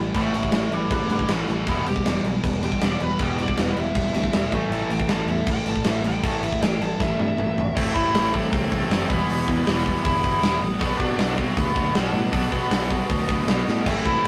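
Punk rock at 158 BPM with an aggressive, urgent drive, cut from a longer piece and captured as a rough rehearsal-room recording with light reverb. A big, punchy acoustic drum kit sits up front with a rolled-off top and drum fills at 1.5 and 13.7 seconds. A growly picked electric bass and three riffing guitars run throughout: a biting overdriven one and a double-tracked thick fuzz one in the background, plus a very quiet, compressed distorted one. A dark, nasal lead guitar with a parked wah enters at 0.2 seconds and solos until 7.8 seconds, when the chords shift from A and Em toward Am, Em and Bm.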